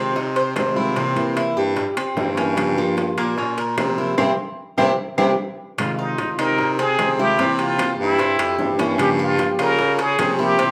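Sultry and warm, this brief excerpt from a longer Cuban son and guajira piece moves at 150 BPM in a straight 4/4, in F harmonic minor, with the band playing live together in one large studio room. A dark, woody fingerpicked steel-string acoustic guitar with old strings supplies accompaniment while the up-front Cuban tres plays metallic, picked arpeggios on its doubled strings, and a breathy, whispered baritone saxophone carries the bass line with a soft attack and vibrato. Percussion settles in over the first second: round, low-tuned bongos played with soft hands sound distant and very quiet, ringing metal-shell timbales sit close and dry in the background, and woody claves join them there. The harmony cycles through Fm7, C7 and Gm7b5, and the whole band hits an accent from 4.2 to 5.8 seconds. At 5.8 seconds a plunger-muted trumpet takes the melody up front, its clear wah-wah tone shaped by light vibrato and scooped notes in a jazz style, all framed by a moderate studio reverb.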